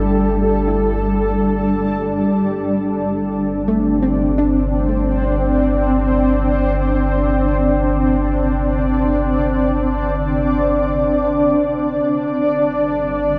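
Opening together with a cloudy, evolving granular pad holding sustained chords up front, a very quiet, soft pluck tracing dark arpeggios until 7.7 s, and a deep, round analog bass with tube saturation resting on G1, this serene, melancholic ambient passage in free time, cut from a longer piece, drifts through Gsus2 and Gsus24 to G5 while the pad's filter sweeps, the bass fades out, and a huge reverb with a 9.0-second tail wraps the dark production.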